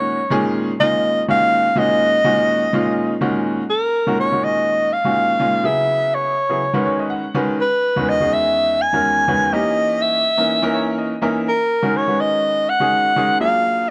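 A breathy soprano saxophone carries the melody up front in this driving, intense jazz passage, its dark, whispered subtone tone marked by a soft attack, light vibrato and a smooth, intimate top. A clear grand piano with a slightly worn, natural character accompanies throughout, moving through rich harmonies such as Ebm9, B69 and Abm11, with fills at 6.6 and 10.5 seconds. A gentle swing and light reverb frame this short cut from a longer piece.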